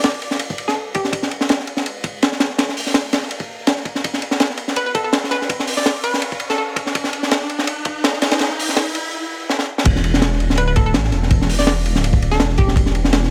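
A crunchy, small-room breakbeat kit with a high-tuned snare and punchy kick drives this dark, atmospheric drum and bass excerpt at 165 BPM in E minor, while a hollow, ring-modulated square pluck with chorus and dub echo flickers between G4 and D5, a background riser builds from 0.7 to 9.1 seconds before a brief break and drum fill, and a deep, rumbling detuned saw bass lands on Em7 at the drop at 9.9 seconds.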